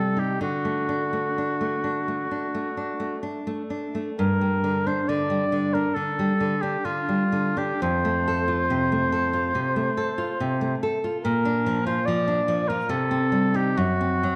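An oboe and a nylon-string guitar begin together in this elegiac, solemn romantic duo in G minor, taken from a longer piece. The oboe carries the melody between F4 and D5 with a soft attack, light vibrato and a smooth top, while the fingerpicked guitar, bright and full-bodied with fresh strings and an audible finger squeak, accompanies from F2 up to A4. Both sit up front and play throughout the 14.4 seconds, moving in a free, rubato 4/4 that drifts between 59 and 74 BPM. The harmony passes from D through G5, F, Bb and C minor before settling on a rootless D7/F# at 13.8 seconds. A moderate recital hall reverb and a dark, warm production frame the pair.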